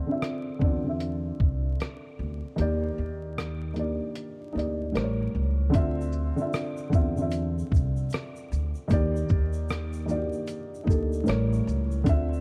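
A dark, dusty lo-fi hip hop recording, set in a small room with light reverb and vinyl crackle, it carries a nostalgic, reflective mood over a swung sixteenth-note feel. A soft, thick-felt upright piano with audible action noise sits up front behind a low-pass filter that sweeps through the opening 5.7 seconds, moving through Dm9, Ebmaj7 and A7b9, while a woody pizzicato upright bass with steel strings anchors the low end. The gritty, compressed sampler-style kit has 12-bit grit and a thumpy kick that drops out from 2.6 seconds until 5.7 seconds, when a grainy tube shaker enters in the background.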